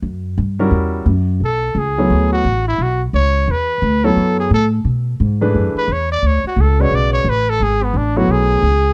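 A clear, forceful trumpet with light vibrato, scooped notes and plate reverb takes a solo from 1.4 seconds over a woody, thumpy upright bass and a short-sustained baby grand piano in this cool, hypnotic modal jazz in B dorian, swinging at 175 BPM in 4/4 with a dark production and light reverb.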